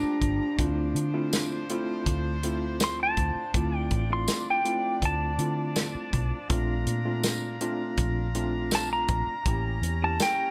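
A straight-eighth soul blues pulse at 81 BPM in D minor carries a mournful, brooding mood, as a clean, twangy lap steel guitar sings an up-front slide melody over a worn, slightly out-of-tune electric piano with light overdrive, tight sustained horn chords with gentle vibrato, a dark, round, foam-muted bass, and a roomy soul drum kit with tight kick and tambourine, all set in light reverb as the chords move from Gm7 and Dm7 to Bbmaj7 and a closing A7b9.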